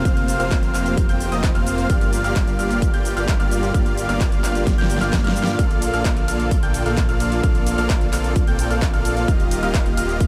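Punchy, up-front electronic kick drives this powerful, emotional festival progressive house excerpt in G minor at 130 BPM, under huge detuned supersaw chords and a high, brilliant concert grand piano arpeggio, both pumping with sidechain and trailed by digital delay, while a thick chorused saw bass, a very quiet lush pad, a big-room kit with a huge snare and metallic hats, a drum fill from 4.7 seconds and a faint swell from 4.9 seconds, and chords moving from Fsus4 through Gm7 and Bbmaj7 to Ebadd9 sit in a dark production with light reverb.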